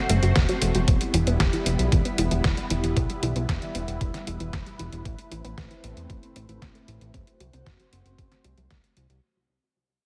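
A heavily compressed, radio-like sound with light reverb frames this melodramatic, nostalgic italo disco fragment at 115 BPM, fading out across its full 9.2 seconds. A lush, vintage string machine holds sustained chords through phaser and ensemble chorus while a round, nasal analog pluck arpeggiates in the background with chorus and delay, both parts carrying filter sweeps. A fat, saturated sawtooth bass sits up front over a detuned 8-bit drum machine's hi-hat and medium-tuned snare and a thumpy electronic kick that enters at 0.4 seconds, all moving through F#dim, Em and Amadd9.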